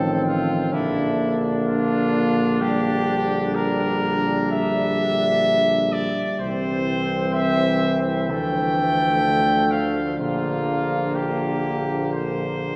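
Noble and stately, this fragment of a classical brass quintet sets a bright, up-front trumpet melody over a distant flugelhorn second line with light vibrato, a smooth-topped French horn and a clear, close-miked trombone in the background, and a soft-attacked, roomy tuba bass, with the five parts sounding together for the whole 12.8 seconds in a wet church reverb.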